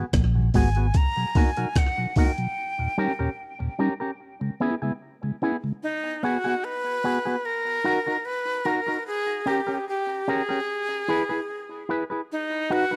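Almost at once, a gritty, compressed sampler-style breakbeat kit enters at a straight 74 BPM in 4/4: thumpy kick, hi-hat and rim click, re-recorded in a small room and placed up front. Beneath it, a round, foam-muted fingered bass and a very quiet, dark fingered guitar riff sound only briefly at the start, and the kit drops out at 2.6 seconds for a break. Throughout, a clean, twangy picked electric guitar with an envelope filter and tape echo carries the accompaniment, joined by a soft tonewheel organ with chorus vibrato and key click until about 5.7 seconds. From 0.6 seconds a breathy, bright jazz flute with vibrato, crisp chiff and tape echo takes the melody up front. The result is a meditative, serious roots reggae passage in G# minor, moving from G#m7 and Bmaj7 through D#7 and C#m7, then into a second section on Gdim/Db, E and B/D#, with a dry, close 1970s-style studio sound and digital ambience.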